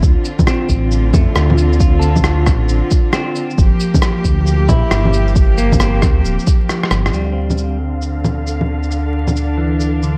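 A melancholic, wistful future garage excerpt opens on a deep, rumbling detuned saw bass and a clear, bowed string section holding sustained chords, both pumping against the sidechain, while a deep, tape-warm electronic kick and an up-front, muffled, pitched-down kit of shaker, cabasa, bongos and rim click drive a swung groove. Half a second in, a dark, clean semi-hollow electric guitar joins as quiet accompaniment, roughened by vintage 12-bit sampler grit and trailed by tape echo. The harmony moves from Dm7 to Gm7. The kick drops out at 6.6 seconds, just before a drum fill at 6.7 seconds leads into a band accent. From 7.1 seconds a filter sweep runs over the strings as the chords return to Dm7, and at 7.9 seconds an airy, breathy wind-like tuned noise texture drifts in far in the background with its own reverb. Light reverb, vinyl crackle and a dark, warm production shape the whole.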